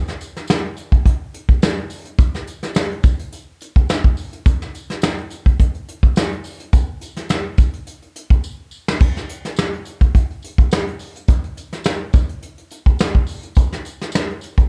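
A dark, dry production carries this funky, hypnotic groove in straight 4/4, cut from a longer piece, with a soft brushed drum kit sitting up front in a roomy small-room sound (tight kick, medium-tuned snare, hi-hat and splash cymbal under a rolled-off top) that plays a short fill at 8.4 seconds, while a jingly, close-miked tambourine stays in the background.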